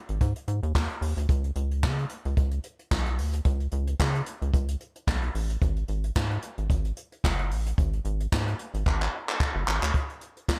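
A dry, close-up sound frames this funky, danceable early-eighties boogie funk excerpt at 111 BPM with a light 16th-note swing, where a rubbery, hollow square-wave synth bass with a resonant filter pluck and dark sustain bounces through its line beside an up-front jazz brush kit of boomy kick, medium-tuned snare, hi-hat and handclaps in a small-room, gated-reverb sound, the drums adding a fill from 8.9 to 9.9 seconds.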